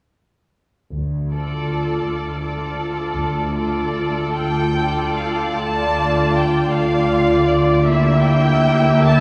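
Muted cellos and double basses open this melancholic, solemn fragment of a slow, rubato romantic movement for string orchestra in 6/8 at 0.9 s, veiled and smooth, before muted violins enter at 1.3 s with a dark, vibrato-rich melody above a lush second violin line and a distant viola accompaniment, every section playing con sordino inside a deep cathedral reverb.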